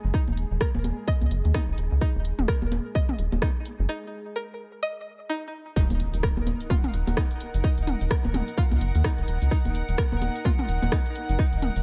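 A cool, clinical minimal techno cut opens on a rubbery, hollow square bass pumping beneath a bubbling, resonant filter texture that stops at 3.9 seconds. Joining almost at once are a twangy, string-like resonator pluck with chorus, 12-bit sampler grit and dub echo, a punchy, up-front kick, echoing electronic congas and toms, and a swung house kit of crisp hats and rim clicks through analog delay. After a short break, the drop at 5.8 seconds brings a very quiet electronic impact and a distant, reedy studio string section with gut-string tone and light vibrato, pumping in a dry, echo-heavy mix.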